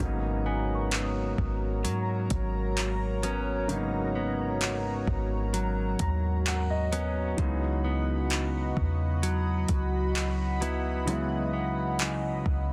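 A straight, unhurried 4/4 groove from a smooth, electronic R&B drum kit, with soft kick, metallic hi-hats and handclaps roughened by overdrive, sits up front beside a deep, boomy 808-style bass, setting a sensual, moody contemporary R&B feel in this fragment of a longer piece. A warm concert grand piano comps alongside a shimmering, retro pulse-width pad and a compressed, direct-recorded clean electric guitar picking arpeggios through spring reverb and digital delay, while a delicate, slightly out-of-tune celesta enters at 0.5 s in the background with its own delay. The piano adds a fill from 5.5 to 7.4 s, leading into the harmony's move from Abm11 to Dbm11, all in a dry, dense and heavily limited modern mix.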